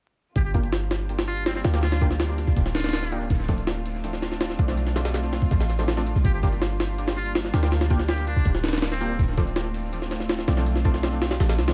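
An echo-heavy mix with light reverb and a bed of vinyl crackle frames this nostalgic, atmospheric drum and bass excerpt in G minor, running at 163 BPM as Gm7 and Dm7 alternate. Up front, a compressed, pitched-up jungle sampler-style kit with a thumpy kick, high-tuned snare, hi-hat and tape echo drives alongside a deep, boomy 808-style sine bass, while a dark string section holds soft, floating sul tasto chords roughened by 12-bit sampler grit, and bold, detuned sawtooth orchestra-hit stabs sit in the background with tape echo. Over this, a buzzy, thin trumpet with a metal mute plays jazz-style phrases with light vibrato and scooped notes, dissolving into dub echo, first from 0.4 to 3.3 seconds and again from 6.2 to 9.2 seconds.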